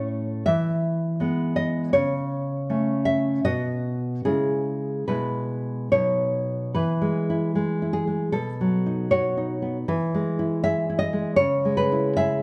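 Nostalgic and tender, this romantic piece for solo classical guitar unfolds in E major at a gently flexible 71-82 BPM in 2/4, its rubato pulse breathing freely. A single nylon-string guitar carries everything across the 12.4 seconds, sitting up front with a woody, thumb-plucked tone whose old strings lend it a dusky, mellow character. The harmony moves from E through A/C#, B and C#m, then on to E/B and B. After 6.8 seconds a second section returns to E, leans on B7, comes back to E and closes on C#m. The guitar spans a range from A2 to E5. A moderate recital hall reverb surrounds the instrument, and the dark, warm production adds to its intimate, reflective feel. The passage is cut from a longer piece.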